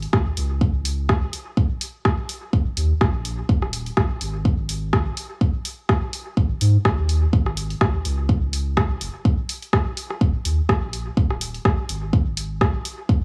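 A deep, up-front electronic kick drum stands out in this cavernous, hypnotic dub techno excerpt, which moves at 125 BPM in 4/4 with a light 16th-note swing. Beneath it, a round analog bass with a sine-like, fast-attack tone sustains dark low notes between Eb1 and Ab2, pumping against a sidechain. A deep house drum kit adds dark hi-hats and rim clicks, its layered, produced sound sitting close alongside the kick. The parts share a small, dry room ambience with little reverb, giving the low end a tight, present feel. The music holds to one repeating section throughout, cut from a longer piece and running to about 13.2 seconds.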